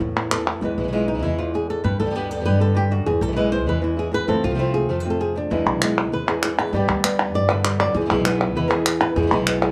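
This flamenco passage, cut from a longer piece, moves at a brisk 196 BPM in straight 4/4 in E phrygian dominant, its mood mournful and intense. The lead flamenco guitar carries the melody up front with a warm, fingerpicked acoustic tone, and from 0.6 seconds it takes a solo over harmony that circles from E through G and F and back to E. A second flamenco guitar with fresh strings adds fingerpicked stabs beneath it, while a pizzicato upright bass on steel strings gives a woody, dark low end. Crisp, close palmas hand claps sound briefly at 0.2 seconds and return at 5.7 seconds for the rest of the passage. The mix has the rough character of a home demo, with small-room ambience and studio reverb around the players.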